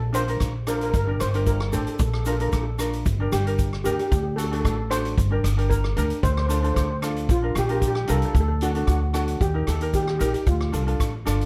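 A dark, lightly reverberant excerpt of bittersweet, cool calypso in G minor at 113 BPM, where a shimmering steel pan carries the melody over woody pizzicato upright bass up front, bright thumb-plucked ukulele, a swinging big-band drum kit with punchy kick, hi-hat and rim click, and a grainy egg shaker in the background, with chords moving from Bb and Gm through D, Eb and a closing Dm7 at 10.5 seconds.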